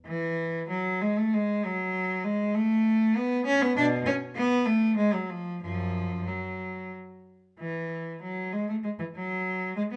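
A moderate stone-room reverb surrounds a single bowed cello in this short cut from a longer baroque-style suite movement in A major, played in 3/4 at roughly 89-101 BPM with a free, rubato feel. The cello sounds clear, smooth and even, its vibrato adding a radiant glow as the line flows between F#2 and D4, placed up front yet carrying a slightly distant air. The opening section returns at 7.6 seconds, and the solo line runs to the end of the clip at 10.0 seconds.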